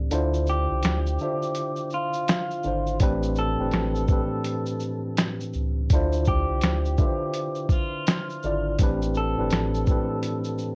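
Lo-fi hip hop at 83 BPM in D dorian, this nostalgic, reflective excerpt swings its 16ths over Dm9 and Am11: a worn, slightly out-of-tune tine electric piano with light overdrive and a round, deep sine sub bass open at 0.0 seconds; a muffled, pitched-down, overdriven sampler-style drum kit with thumpy kick, snaps, hi-hat, shaker and snare sits up front from 0.1 seconds; and a dark, slightly broken-up electric guitar through a small old amp carries the melody from 0.5 seconds, under light reverb and the warbling pitch drift of old cassette tape.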